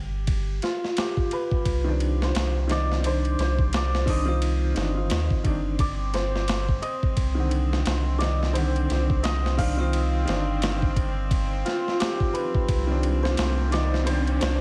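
A deep, round sub bass carries this hypnotic, dark trip hop excerpt, sitting up front with tube saturation and holding low between G1 and Eb2 over a single Cm(add9) chord in C harmonic minor. At 87 BPM in 4/4 with a 59% swing on the sixteenths, a gritty, compressed boom bap sampler-style kit joins at 0.3 seconds, its thumpy kick, high-tuned snare, hi-hat and ride cymbal re-recorded in a large room and placed close to the listener. A shimmering, ringing santur plays the melody from F4 to F5 through tape echo, while a clear, woody upright piano enters at 1.8 seconds as accompaniment, its audible action noise and tremolo giving it an intimate presence. A chamber string section of bowed, earthy tone with a biting edge and smooth top arrives at 5.8 seconds, holding sustained chords on C4 in the background. A very quiet electronic riser appears at 12.4 seconds, and the whole piece sits in a digital ambience, cut from a longer work.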